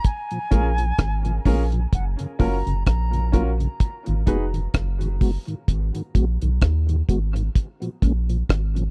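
Swung sixteenths drive a hazy, laid-back dub reggae excerpt, where a dry, dark drum kit of tight kick, hi-hat and rim click sits up front beside a round, soft sub bass. An airy silver flute with expressive vibrato floats through dub echo until 3.6 seconds, while a woody upright piano adds polished stabs, also echoed, until 4.4 seconds. A mellow, flute-like tonewheel organ with key click, chorus vibrato and a stopped rotary speaker holds the chords of the small, close 1970s-style room.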